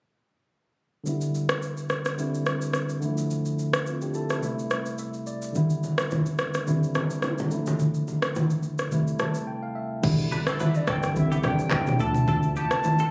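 A tine electric piano opens at 1.0 s, clean and up front under a filter sweep, and an electronic afro-pop drum kit with a deep kick, handclaps, rim clicks, shaker, toms and crash joins at once, setting a sultry, hypnotic afrobeats groove at 107 BPM with a light swing in D dorian over Em7, Cadd9, Dmadd9 and Am7/C. Acoustic congas and bongos with a live-room feel enter at 5.6 s, and after a short break and a piano fill, a round, dark analog bass arrives at 10.0 s. Soon after come a bright, twangy clean guitar riff with chorus and delay, a mellow, hollow flute melody with vibrato and delay that sounds distant, and a very quiet, blurred granular pad, all set in club reverb with a phone-in-the-room character.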